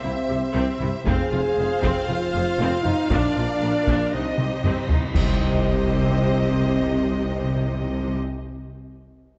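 Dark and heroic, this cinematic orchestral film-score passage is cut from a longer piece and moves at a steady, straight pulse. Lush bowed violins carry the melody with smooth vibrato over a second violin line, while rich, distant violas and a sustained string section with expressive portamento fill in the harmony. Sombre French horns hold distant, roomy chords, and the low end rests on intense, close cellos, a mellow close-miked tuba and a focused double bass section. Heavy-stick taiko drums, close and dry, enter at 0.8 s, joined by dark cymbal swells, clash cymbals and concert bass drum, and articulate hard-mallet timpani arrive at 4.1 s with a fill that leads, alongside a drum fill, into a full-ensemble accent at 5.1 s. A huge, bright impact sits barely audible beneath that accent, and the whole piece is bathed in a wet scoring-stage reverb with a dark, warm production.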